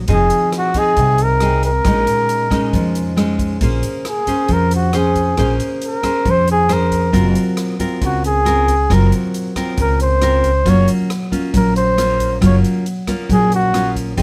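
Light reverb surrounds this wistful, melancholic bossa nova excerpt, where an up-front, fingerpicked classical nylon-string guitar with fresh strings and audible finger squeak joins a woody, growly pizzicato upright bass and an airy, polished big-band drum kit of hi-hat, punchy kick and rim click set low in the mix, while a warm flugelhorn with light vibrato, soft attack and scooped notes carries the melody and takes a jazz solo from 3.6 seconds as the chords move from Fm7 and Bbm7 to Bbm9 and Gbmaj7#11.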